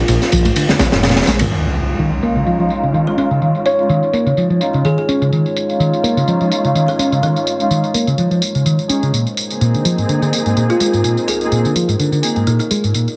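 Heavily compressed with a radio-like squeeze, vinyl crackle and a wet studio reverb, this funky, swaggering breakbeat cut at 126 BPM opens over a moody analog pad pumping on Bb9sus4, with a menacing detuned saw bass, a crunchy, punchy breakbeat kit and hard-hand congas all dropping out by 1.5 seconds. From there an electronic impact marks the shift to Eb9sus4, and the growly, bright picked electric bass riff carries on under a filter sweep while an overdriven tambourine ticks throughout. Lush, woody string stabs soaked in dub echo arrive at 1.9 seconds, and a ringing kalimba melody with a small-speaker tone and its own dub echo floats in and out, returning after the chords fall back to Bb9sus4.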